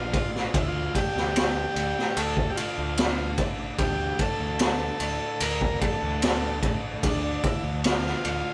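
A raw, gritty garage drum kit sits up front with a boomy kick, high-tuned snare and ride cymbal, driving this mysterious, trippy psychedelic rock excerpt in D minor at a straight 74 BPM, moving from Bb to Dm. Above it, a buzzy, overdriven vintage combo organ carries the melody, while a fuzz-drenched picked bass holds the low end. A clean, compressed twelve-string electric guitar riff with tremolo sits in the background, and a very quiet, reedy tonewheel organ sustains chords through a rotary speaker, all captured live in one room with light reverb over about 8.5 seconds.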